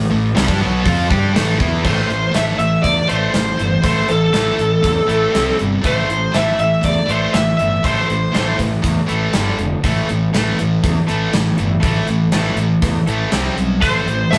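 Driving and aggressive, this hard rock excerpt in A minor runs at 120 BPM in a straight 4/4, with two bright, picked guitars, one scooped and high-gain, the other tight, laying down distorted riffs over a round, punchy fuzz bass. A gated 80s drum kit with a tight kick and medium-tuned snare joins up front at 0.4 seconds, and a bluesy overdriven lead guitar carries the melody from 1.9 to 8.6 seconds before returning at 13.8 seconds. The rough rehearsal-room recording sits in a wet stone room, with chords moving mostly between Am and power chords on C, G and A.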